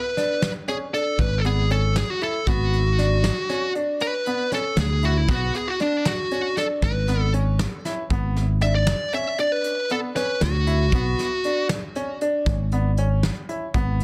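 A fuzzy, compressed lead guitar opens this brooding, tense progressive instrumental in 11/8 over a Bmadd9 chord with a solo melody carried by plate reverb and digital delay, joined almost at once by brilliant baby grand piano arpeggios and a distant, roomy brush drum kit with a punchy kick, while a growly, up-front fretless bass with subtle chorus enters at 1.2 seconds, and the guitar stops at 11.7 seconds, leaving the piano, bass and drums in a dense, heavily limited modern master.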